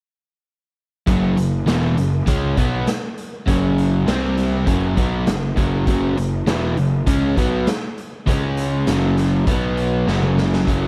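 Classic rock excerpt at 100 BPM in a straight 4/4 with a swaggering, driving feel, where two overdriven electric guitars play the riff together, one crunchy and up front and the other sitting in the background with spring reverb, over a growly, fuzzed picked bass and a raw, saturated garage drum kit with a punchy kick and gritty, pumping room sound, moving through power chords such as F#5, C5, C#5 and B5 before a drum fill at 10.1 seconds.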